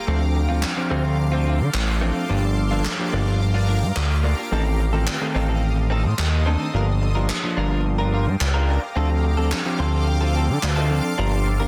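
A fat, detuned sawtooth analog bass sits up front in this bittersweet, driving dance-pop excerpt in G minor at 108 BPM, its filter pluck giving sustained notes a fast attack, while a mellow tine electric piano accompanies chords moving through Dm7, Gm7 and Adim and adds a fill at 9.5 seconds. A clean, direct-recorded electric guitar plays a picked, compressed riff through lush chorus, and a shimmering, ethereal ambient pad holds slow-attack chords with octave-up shimmer, phaser and its own built-in reverb. Snare drum and handclaps enter at 0.6 seconds, played with brushes and a rolled-off top in a small, pumping room, barely audible electronic impact and swell effects mark the opening and close, and the dense, heavily limited master carries light reverb.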